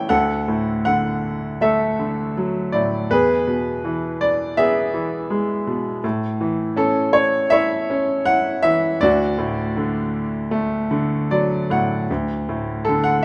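Classical solo piano, lyrical and tender, moves with a rubato feel at 80 BPM in 4/4 in D major, tuned to A4 = 438 Hz, in this excerpt cut from a longer piece. A clear, boxy grand piano with short sustain sits up front in light reverb, ranging from D2 to F#5 across the full 13.2 seconds as the harmony passes from Dadd9 through E and A back to D. A piano fill at 10.9 seconds leads into a new section at 12.1 seconds.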